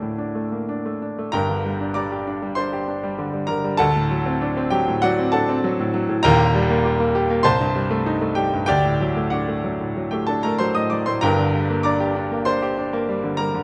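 Close, detailed microphones and a moderate concert-hall reverb frame a clear, natural, up-front baby grand piano with short sustain, playing alone throughout this agitated, stormy classical virtuoso study in G minor, cut from a longer piece, at 97 BPM in 4/4 with uneven, rubato beats, spanning Eb1 to Eb6 as it moves from D to G minor at 1.3 seconds and through D7, E-flat and Am7b5/C before settling on G minor at 11.2 seconds.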